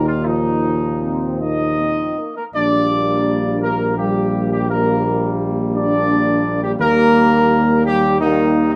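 Close, detailed microphones in a moderately reverberant large studio capture this solemn yet triumphant classical brass passage in 3/4, cut from a longer piece, where a mellow, roomy trumpet section carries the melody over sustained chords from a clear, lightly vibrato-touched trombone section and a smooth-topped French horn section, with a distant tuba anchoring the bass as the harmony moves from Ebsus2 through Bb6 to settle on Eb at 6.8 seconds.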